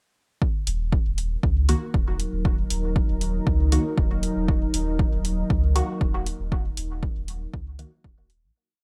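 Light reverb gives this short dub techno piece a cavernous, meditative air, set in Eb minor at 118 BPM in a straight 4/4. An overdriven, punchy analog kick opens the groove at 0.4 s with a four-on-the-floor pulse, sitting up front in the mix. Dry, programmed hi-hats follow with a backbeat, alongside a round sine sub bass that moves in a dotted rhythm with sidechain pumping. Sparse, muted chord stabs built from detuned sawtooth and square waves move one shape in parallel, given a mellow filter pluck, phaser and trailing dub echo. A moody pad of detuned sawtooth unison over a sine sub octave enters at 1.8 s, holding long, slow-attack chords with chorus, its own reverb and a pumping pulse. The whole groove fades out from 5.8 s to the end.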